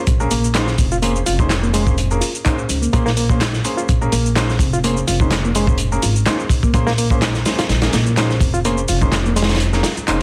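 The recording sounds dense, dry and heavily limited, with a layer of vinyl crackle over the mix. This is a swaggering, raw breakbeat cut from a longer piece, running at 126 BPM in Bb minor with a swung sixteenth feel and opening on a Bbm9 chord. A crunchy acoustic break kit drives it, with a tight kick, medium-tuned snare and hi-hat sounding gritty and saturated, its top rolled off, while a punchy analog drum machine adds handclaps, hi-hat and shaker further back, re-recorded in a small room. An upright bass played pizzicato gives a woody, thumpy low end through tube saturation, and a clear concert grand piano with long sustain and deep bass hits stabs treated with digital delay. From 0.3 seconds a reedy, worn electric piano plays a slightly out-of-tune riff through its built-in speakers, colored by fast tremolo and digital delay. The kick drops out at 9.6 seconds for the final moments.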